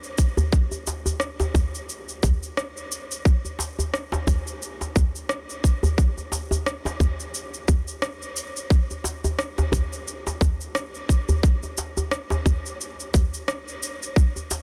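An overdriven electronic cabasa and rim click open this downtempo excerpt at 88 BPM in 4/4, with a gentle 16th-note swing, before a tight, up-front electronic kick drum with its own overdrive and small-room grit joins at 0.2 seconds. A close, cracking djembe played with soft hands enters at 0.4 seconds, adding an acoustic, mystical touch to the warm groove. Light reverb sits over a dense, heavily limited modern master.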